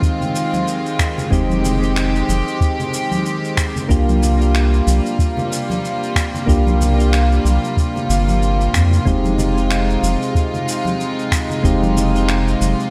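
Wistful and relaxed, this sunset chillout passage, cut from a longer piece, settles into a loosely swung groove in 4/4. Soft electric-piano-like synth keys carry the accompaniment with a mellow, rounded tone, colored by chorus, tremolo and a diffuse ambient delay, while a rich studio string section holds floating, bowed chords beneath them. An electronic kick gives a deep pulse, a gritty, compressed shaker and finger snaps add texture, and bright congas sit distant in the background. A dark, nasal analog bass enters at 1.3 s and sits up front in the mix. The harmony moves from Fm7 to C7sus4 at 3.9 s and back to Fm7 at 9.1 s, with a lush hall reverb giving the mix a dreamy glow.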